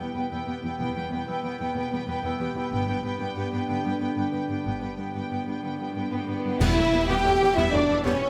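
A lush string orchestra sits on a moderate scoring-stage reverb in this short, swashbuckling cut from a longer heroic adventure film score, moving in a straight 12/8 at 124 dotted-quarter beats per minute in E minor. Violins carry the expressive, vibrato-rich melody with a soft attack, while a second, more focused violin line sits in the background, and violas add rich bowed accompaniment beneath. Concert harp arpeggios ring out in a fingerpicked shimmer, the close cellos supply a bass line, and the double basses join from 0.8 s with a rich, expressive support in the background. A bright cymbal swell with clash cymbals and concert bass drum rises in at 2.7 s as the harmony moves from Em to G, and a mellow, very quiet French horn section enters at 6.1 s with smooth, tight sustained chords. At 6.6 s the music returns to Em with an ensemble accent, marked by a brief timpani stroke on E and a darker-toned concert snare drum, clash cymbals and bass drum kit tucked into the background, giving the passage a bold, adventurous lift.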